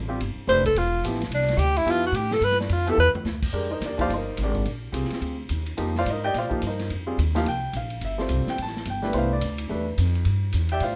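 A woody, growly upright bass opens this cool, searching modal jazz excerpt at a brisk 215 BPM with a swung 4/4 feel, joined almost at once by a natural-sounding grand piano and a distant, roomy vintage drum kit with dark cymbals and a punchy kick. A mellow tenor saxophone with vibrato takes the front for a brief solo from 0.5 to 3.1 seconds, and a drum fill at 3.0 seconds leads into the second section. The piano and bass carry on over suspended G and F chords under light reverb, tuned slightly below standard pitch at A4 = 438 Hz.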